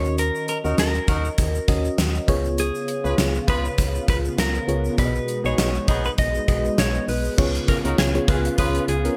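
1980s-style pop at 100 BPM in Db mixolydian, uplifting and romantic, where a dark, clean electric guitar carries the melody through tape echo over a warbling FM electric piano with tremolo and phaser, a punchy, round FM bass, a grainy, distant tube shaker, and a gated 80s drum kit with a fat snare and tight kick up front, while a bright, tight horn section adds stabs from 0.6 s and a silky string machine with phaser and ensemble chorus enters at 2.6 s to hold soft chords in the background of this short cut from a longer piece.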